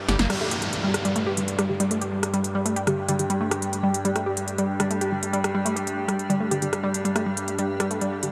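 A straight 4/4 pulse at 140 BPM drives this dark peak-time techno excerpt, where an up-front electronic drum kit with a punchy snare and smooth hats opens with a fill; a bright, detuned analog pluck riff with overdrive and tape echo leads over a resonant overtone-sweeping drone, muted dub chord stabs sit in the background under a filter sweep, a downlifter runs from 0.3 to 3.7 s, and a cloudy granular pad enters at 2.3 s, in a dreamy mix soaked in reverb.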